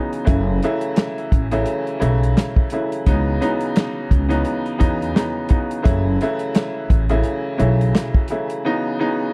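Gritty and dark, this brief boom-bap hip-hop excerpt at 86 BPM in F# dorian swings its sixteenths as a clear, woody upright piano filtered through cassette tape sits up front over a dry, rolled-off soul drum kit with a tight kick, medium-tuned snare, hi-hat and handclaps, while a pizzicato upright bass adds a woody, warm low line in a small room as the chords move between F#m7 and C#m11.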